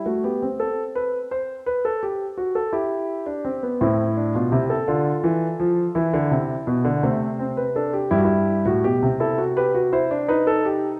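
A warm concert grand piano sits up front in a recital hall whose moderate reverb, with a decay of about 1.7 seconds, lends the sound a sense of space, and the instrument's deep bass gives the lower register real weight. This is a serious, contemplative classical piece, a baroque-style three-part fugue in A minor for solo piano, heard in an 11-second section cut from a longer work. The music moves in 6/8 at 56 beats per minute, counted in dotted quarters, with a straight feel. The piano spans from G2 up to C5 and plays alone for the full span, from 0.0 to 11.0 seconds. The harmony circles closely around A minor, passing through E minor, D minor and bare B and E fifths before landing on a B7 at 10.3 seconds, which leaves the passage poised to continue.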